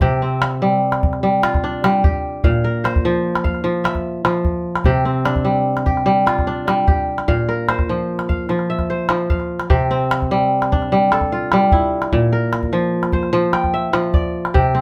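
A ringing, crisp kora fingerpicks up-front arpeggios from the first moment alongside a small, close calabash in this warm, flowing West African traditional piece at 99 BPM in 12/8 and C mixolydian, its harmony rocking between C and Bb as the two play live together in a moderately reverberant studio room, in a passage cut from a longer performance.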